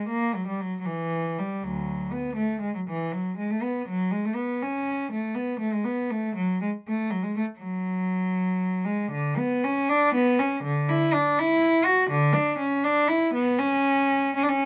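A single bowed cello opens and carries this serene, dance-like baroque-style suite movement alone, its gut-string tone rich and reedy in a period style, placed up front and heard in fine detail through close microphones in a dry room. The playing moves in a lilting 12/8 at 80 dotted-quarter beats per minute with a free, rubato feel, ranging from D2 to F#4 in F# minor, tuned to A4 = 439 Hz. This 14.7-second passage is cut from a longer piece.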